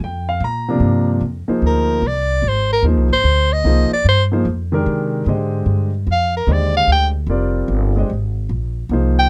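A concert grand piano with audible action noise and a woody, thumpy pizzicato upright bass open this short cut from a longer modal jazz piece in F dorian, swinging in 3/4 at 148 BPM with a spiritual, searching mood over a Bb to Fm11 to Bb harmony. At 1.7 seconds a breathy, clear soprano saxophone takes the solo with light vibrato and scooped notes, stopping at 7.1 seconds and returning briefly at the very end. The close, detailed sound has little reverb, keeping all three players up front and intimate.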